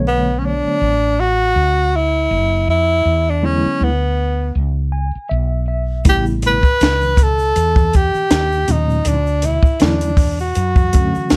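A breathy tenor saxophone carries the melody up front in this nocturnal, cool jazz-hop excerpt, its subtone playing marked by scooped notes and a light vibrato over a round, woody fretless bass with lush chorus and a worn, slightly out-of-tune tine electric piano pulsing with medium tremolo through a combo amp. The electric piano takes a fill from 4.6 to 6.1 seconds, and at 6.0 seconds a compact cocktail drum kit arrives with a dark, smooth small-room sound, a tight kick and a high-tuned snare, joined by a distant, very quiet tube shaker and congas. Swung sixteenths and light reverb give the chords, which move from Bm9 through E7 and A7 to Dmaj7, a relaxed late-night sway.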